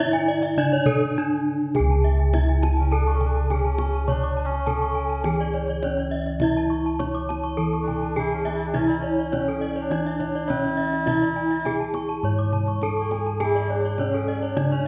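Bossed bronze gongs sit up front with a round, beating tone, carrying the bass line of this hypnotic, brilliant Balinese gamelan passage, a section cut from a longer piece in C# pelog at 103 BPM in a straight 4/4. Above them, a bright bronze metallophone struck with horn mallets rings out the melody, its paired tuning producing shimmering beats. Two more bronze metallophones weave arpeggios: one dark and smooth, the other higher and airy, both ringing with that same paired-tuning shimmer. A tight kendang, played with hard hands, taps along in the background. At 2.8 s a reedy, nasal melodica enters with a second line and stays to the end. The ensemble sounds like it was captured in a church or concert hall, with a 1.7-second recital-hall reverb and a softened top end that lends the brilliance a slightly muted edge.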